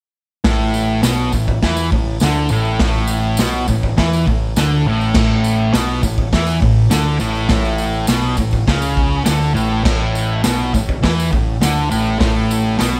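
Garage rock with a rowdy, swaggering mood, this excerpt moves at 102 BPM in a straight 4/4 and sits in A major. A fuzz guitar carries the riff from 0.4 seconds, bright, compressed and double-tracked, and it sits up front with distortion in a low register. Beneath it a growling picked electric bass, direct and amped with overdrive, holds the bottom end. The raw garage drum kit, with crash, hi-hat, punchy kick and medium-tuned snare, sounds saturated and gritty in a small, pumping room with a rolled-off top. A jingly tambourine joins at 0.7 seconds, close and dry in the background, and a light reverb gives the whole section, built on an A5 chord, a bit of space.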